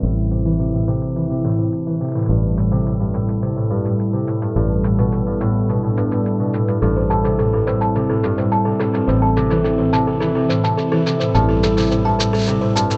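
Folktronica in an intimate, autumnal mood: a bright, ringing concert harp plays up-front arpeggios over a smooth, detuned sawtooth pad with chorus and plate reverb in the background, while a foam-muted fingered electric bass with tube saturation holds the low end and a muffled, pitched-down shaker keeps time, the harp, pad and shaker each moving through a filter sweep, until a buzzing, woody kalimba with tape echo joins as a second line at 6.8 s in a snug small room.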